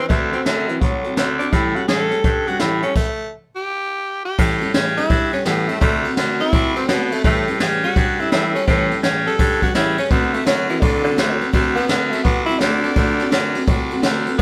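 Upbeat and rowdy, this rockabilly excerpt swings at 168 BPM, with a raspy, gritty tenor saxophone carrying the melody over a picked steel-string acoustic guitar with fresh strings, a forceful, punchy baritone saxophone holding down the bass, and a brushed drum kit with dark cymbals, a high-tuned snare and a punchy kick. The band plays live in one room with light reverb, hitting a stop from 3.0 to 4.4 seconds before the tenor saxophone launches into a solo, its scooped notes and light vibrato riding the D7 and A7 changes through to the end.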